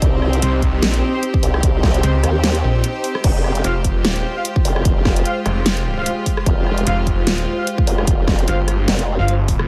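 A dry, up-front mix opens this aggressive, menacing slice of heavy wobble dubstep in F minor, cut from a longer piece and moving at 149 BPM with a swung, half-time feel. A punchy electronic kick and a dubstep kit with a huge snare, hi-hat, rim click and crash drive underneath two snarling forces: a chorused, overdriven formant-sweep wobble bass and a growling, distorted saw bass that enters at 0.4 s, while a brief break at 2.8 s gives way to a shift from Cm to Fmadd9. Behind them, a gut-string chamber section holds reedy, pumping chords, a classical-style brass ensemble fires off stabs through tape echo, and a cloudy granular pad drifts, blurred and evolving, in the background.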